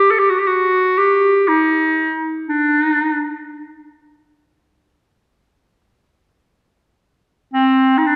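Passionate and warm, this brief excerpt of Turkish music in free time, tuned to A4 = 444 Hz, features a bright, vintage-toned solo clarinet in a classical style, placed up front and ranging from C4 to A4 across its 8.2 seconds, carried by the wet reverb of a recital hall with a 1.6-second decay.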